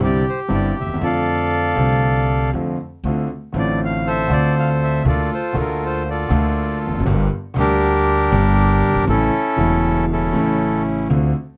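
Passionate and dramatic, this short tango cut moves at 119 BPM in 4/4 with a rubato feel, opening in F major before turning to D minor at 3.0 s. A reedy, bright, up-front bandoneon carries the melody over a warm, intimate concert grand piano with deep bass and audible action noise, while a woody, growly pizzicato upright bass anchors the low end. Close, detailed miking and light reverb give the sound an immediate, present quality.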